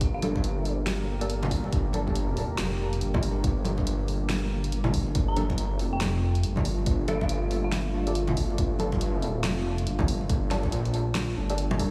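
Dark and meditative, this half-time deep dubstep excerpt rests on a rumbling, detuned saw bass up front with tube saturation, a punchy layered kick, a deep house kit with hi-hat and a fat snare, and bright, vintage congas with dub echo, while a moody ambient pad with chorus and built-in reverb, muted filtered dub chord stabs with phaser and dub echo that return at 5.4 seconds, and an eerie, inharmonic FM bell heard briefly at the start and again from 5.3 to 8.1 seconds sit in the background over a single Gmadd9 chord in a small, lightly reverberant room.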